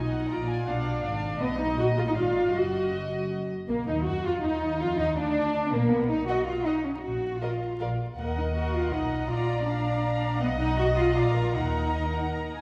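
A quick classical-period movement for string orchestra in Eb minor at 160 BPM in 3/4, urgent and stormy, with two violin sections playing the melody and a second line in floating, soft-attack sul tasto bowing, a rich viola section as accompaniment, a lush, up-front cello section with vibrato and a double bass section with light vibrato on the bass, the whole set back in a scoring-stage reverb with vinyl crackle, cut from a longer piece.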